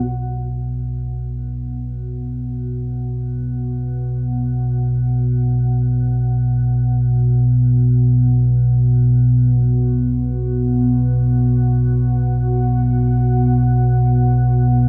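A deep, rumbling drone sits up front in this ominous, desolate dark ambient piece, its triangle and sawtooth tones unfolding in free time from B1 to B2 with slow attack, long release and its own built-in reverb. Behind it, a moody analog pad with a sub octave holds a sustained B5 chord between B3 and F#5, coloured by chorus and phaser, as it fades in over the full 14.9 seconds. A light small-room ambience surrounds this brief passage cut from a longer work.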